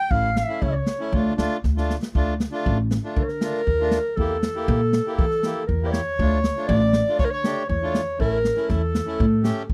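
A festive yet bittersweet klezmer piece in D harmonic minor, cut from a longer performance, opens with a warm, classical-style clarinet carrying the melody up front as a solo passage from 0.0 to 2.1 seconds. Behind it, a second clarinet with a dark, distant, roomy tone traces its own line in the background. A drum fill from 1.6 seconds leads into the longer second section at 2.1 seconds, while the steady 119 BPM pulse in 4/4 keeps a straight feel throughout. The reedy, single-reed accordion provides clear, airy accompaniment with a dry tuning, while the upright bass is played pizzicato, its woody steel-string sound sitting up front. The big-band drum kit has a polished, hall-like acoustic character, with a medium-tuned snare and a punchy kick. Harmony moves between A, D minor and E diminished, all captured in a close, dry 1970s-style studio sound with little reverb.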